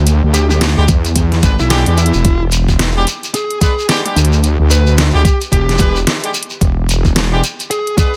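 A heavy, wobbling sawtooth bass sits up front from the very start, its detuned, saturated tone thickened by chorus and overdrive as it holds down the low end of this playful, funky glitch hop excerpt, with a barely audible downlifter sweeping through the opening 2.3 seconds. A dark, fuzzy lead guitar carries the melody from 0.3 seconds, picked and compressed with distortion and tape echo. Brilliant pop-style horn stabs arrive at 0.8 seconds, their light vibrato and present ensemble sound pumping against the sidechain and trailing tape echo. A knocking, overdriven electronic kick joins at 0.9 seconds, reinforcing an electronic pop kit of hi-hat and deep snare that entered at 0.1 seconds, both re-recorded in a small room, while a grainy acoustic shekere adds texture underneath. The 16th-note swing gives the groove a loose bounce, and the mix stays dry and close with little reverb, built over a single E7 chord.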